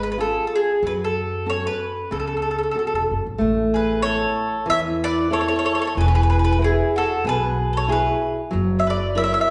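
Swinging gently at 94 BPM in 4/4, this romantic, wistful Italian folk serenade opens in F# minor before turning to A major at 3.4 s, and it is cut from a longer piece. An up-front, round mandolin carries the picked double-string melody over fingerpicked, boxy flamenco guitar and a growly, thumpy upright bass played pizzicato, while a second, woody mandolin line enters at 3.7 s. The sound sits in a reverberant recital hall with a soft, dulled top end, and the harmony moves through A and Eadd9 before settling on F#7.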